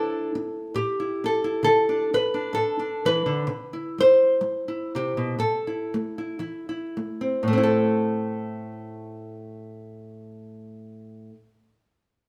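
Wistful and melancholic, this short folk passage for solo fingerstyle guitar moves at a slow 56-68 BPM in A minor, with a light swing on the eighth notes. A small, warm nylon-string guitar sits up front, fingerpicked from the low A2 up to C5. It slows down through the first 7.4 seconds as the harmony drifts from Dsus2 to Cmaj7 and A5 before settling on A minor. A moderate stone-room reverb lends a live, natural air to this fragment of a longer piece.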